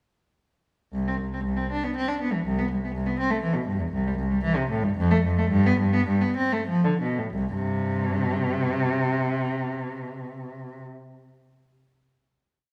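A classical, baroque-style suite movement for unaccompanied cello, this serene and radiant complete piece in C major moves in a rubato 3/4 at 88 to 124 BPM, with the solo bowed cello placed up front, its warm tone colored by vibrato and expressive portamento as it spins broken-chord figuration across the strings from C2 to D4 over a C, F, G progression, slowing down from 3.2 seconds until it settles on a final C5 chord at 7.3 seconds that rings into the concert hall's moderate 1.9-second reverb.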